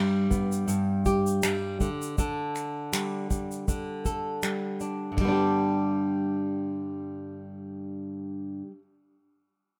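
This sunny, carefree acoustic pop excerpt moves at 80 BPM in 4/4 with a light 55% swing on the sixteenths, set in G major with tuning at A4 = 441 Hz. A fingerpicked flamenco guitar carries the accompaniment from the start, warm and up front, ranging from G2 to A4 over a G chord that moves to Dsus4. An unplugged drum kit enters at 0.3 seconds with finger snaps, a punchy kick, ride cymbal and shaker, played with bundle sticks for an airy, polished small-room sound. A new section begins at 5.2 seconds, the kit drops out at 5.4 seconds, and the guitar continues alone until the cut at 8.8 seconds. A light reverb gives the recording a gentle sense of space.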